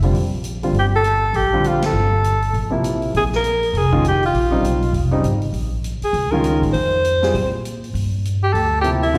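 A warm grand piano with slapback echo, a woody, growly pizzicato upright bass up front and a swinging big-band drum kit with a punchy kick open this searching, spiritual modal jazz excerpt in G dorian at a swung 200 BPM, moving from Gm11 to Bbm11 and back, as a clear alto saxophone enters at 0.8 seconds with the melody, its vibrato, soft attack and scooped notes carried on its own slapback echo, the band hits an accent at 1.8 seconds, and the performance comes across as a live gig heard through the venue's PA in recital hall reverb.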